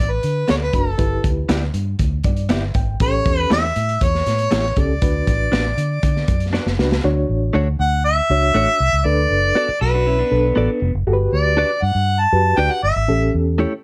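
A mellow harmonica carries the melody in this uplifting, joyful cut from a 1960s-style soul tune in D major at 119 BPM, its scooped, lightly vibrato-touched notes sounding distant and roomy yet up front. Beneath it, a round, foam-muted fingered bass runs throughout, and crunchy breakbeat drums with a punchy kick drive the first half until a drum fill closes the drum part at 7.0 seconds. Meanwhile, a clean, compressed direct guitar plays stabs and a reedy, worn electric piano with overdrive and fast tremolo supplies accompaniment. A slightly broken-up, lo-fi guitar through a small old amp adds a brief phaser-tinged riff at 9.8 seconds, all within a dark production with light reverb.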